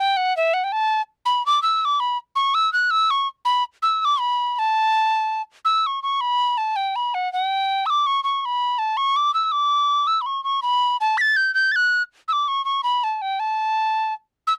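Celtic folk in a lively, rollicking 6/8 at 109 BPM, set in A mixolydian and tuned slightly below standard pitch. A lone tin whistle carries the whole excerpt, its airy, mellow tone shaded with vibrato and a soft attack as it moves through two sections, the second arriving at 5.7 seconds. Close-miked and up front in a dry 1970s-style studio sound, the whistle's expressive playing comes through with intimate clarity.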